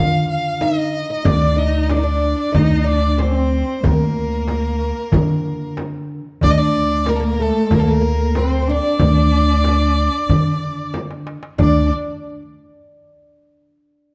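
Soulful and melancholic, this Arabic maqam ensemble piece in D maqam kurd moves at a steady 93 BPM in a straight 4/4, cut from a longer performance. A clear, smooth violin carries the melody with vibrato and an even bowed tone that sits slightly distant, while a bright, woody oud with double strings plays a plectrum-plucked second line beneath it. Up front, a pizzicato upright bass with steel strings anchors the low end, and from 0.6 seconds a crisp metal-shell darbuka struck with hard hands joins a deep, large frame drum heard in a small-room sound. A rich cello enters at 1.2 seconds with expressive vibrato and portamento, adding a second bowed voice from a distance. A drum fill at 10.9 seconds leads toward a new section, all set in a moderate recital hall reverb.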